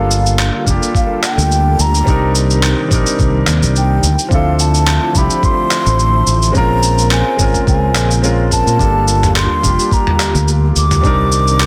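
A mellow, airy baroque flute with vibrato carries the melody in this relaxed sunset chillout excerpt in G minor at 107 BPM, its wooden tone set in digital delay over an intimate concert grand piano roughened by 12-bit sampler grit and tape echo, while a silky string machine with phaser and ensemble chorus sustains chords in the background. A round, dark fretless electric bass sits up front, and a dusty soul sampler-style kit of handclaps, shaker and toms enters at 0.1 seconds, joined at 0.7 seconds by a thumpy, tape-warm electronic kick, both swung on the 16ths. Minor ninth chords move from Gm9 through Cm9, Dm9 and Bbm9 under light reverb and a dense, heavily limited modern master.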